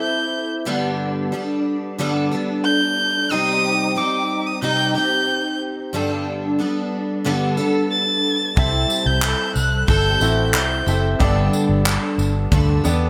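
A dark, bowed solo violin with vibrato opens this easy-going acoustic pop piece in G major, carrying the melody high in its range over a picked steel-string acoustic guitar that is bright, full-bodied and up front, its fresh strings thickened by an ensemble chorus. The tempo is a relaxed 91 BPM in a straight 4/4, and the harmony moves through C6, Gadd9 and a brief turn to C minor before settling back on Gadd9. At 8.6 seconds the band joins: a brilliant, woody upright piano adds accompaniment, a vintage foam-muted fingered electric bass sits round and amped near the front, and a natural country drum kit brings handclaps, tambourine and a punchy kick in an airy, polished studio room. The violin line ends at 11.0 seconds, leaving the guitar, piano, bass and drums to carry the carefree mood through the final moments. A moderate plate reverb and bright 1980s-style digital production give the whole a sheen, and the music is cut from a longer piece.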